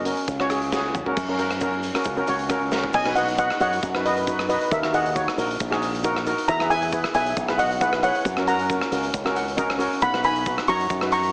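Calypso at 136 BPM in B major with a sunny, bouncy mood, this excerpt from a longer piece puts a shimmering lead steel pan, played with soft rubber sticks and touched by slapback echo, up front over a mellow double-seconds pan accompaniment, a punchy fingered electric bass through an envelope filter, a big rock drum kit with bright cymbals and a stone-room ring that adds fills around 0.7 and 2.7 seconds, and a grainy tube shaker in the background, while a steel pan fill arrives at 9.1 seconds and the whole mix carries a heavily compressed, small-speaker radio sound in a modest room.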